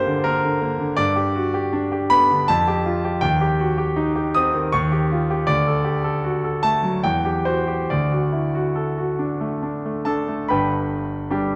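A romantic classical character piece for solo piano, this short excerpt from a longer work moves in a lyrical, warm mood at a flexible 67-84 BPM in 3/4, with the pulse stretched and eased through rubato. A bright concert grand carries it alone from 0.0 to 11.6 seconds, ranging from a deep G1 in the bass up to Eb6, its tone brilliant, polished and present, with a short sustain. The piano sits up front, yet it is wrapped in the generous reverb of a recital hall with a 1.5-second decay, and the overall production leans dark. In G major with tuning at A4 = 438 Hz, the harmony opens on G minor before turning to G major, then drifts through F add 9, C minor over E-flat and an E-flat seventh on the way to D. A passage touching C over E and D again leads into a new section at 10.5 seconds, landing back on G just before the clip ends.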